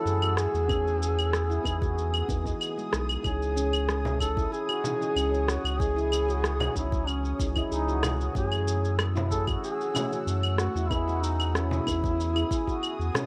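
A light reverb and small-room ambience surround this warm, mystical organic downtempo excerpt in C# minor at 94 BPM, where a mellow folk-style duduk carries the solo melody with vibrato, soft attacks and scooped notes, trailed by digital delay. Beneath it, a ringing stainless-steel handpan plays fingertip arpeggios, a dark felt-muted upright piano with audible action noise sits in the background, and an ethereal detuned pad adds chorused, phased, gritty sustained chords over F#m7, Emaj7 and C#madd9. A round, tube-saturated sub bass pumps up front alongside electronic shaker, claves and rim click, with a soft electronic kick arriving at 0.7 seconds and a small, bright acoustic frame drum joining at 4.1 seconds.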